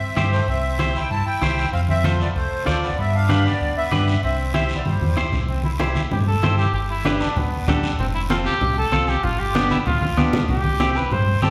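A straight 4/4 cumbia pulse at 192 BPM drives this festive, danceable Latin piece in C major, where soft-handed, low-tuned congas, a raspy guiro, deep sine sub bass with an octave and clean, compressed semi-hollow electric guitar support a sweet, reedy accordion melody with light tremolo tuning until 5.2 s, while a warm, punchy, vintage trumpet plays a second line from the start and takes a vibrato solo from 5.5 s, the sound set in the wet reverb of a church or concert hall.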